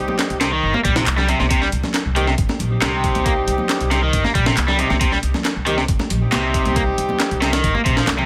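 An up-front, bright overdriven electric guitar drives this swaggering, energetic breakbeat clip in C minor at 137 BPM, riding over a gritty, pitched-up sampler-style drum kit with a thumpy kick and high-tuned snare, layered electronic handclaps, woody pizzicato upright bass, ringing congas in the background, and smooth, vibrato-tinged horn stabs filtered and treated with delay in a small, lightly reverberant room.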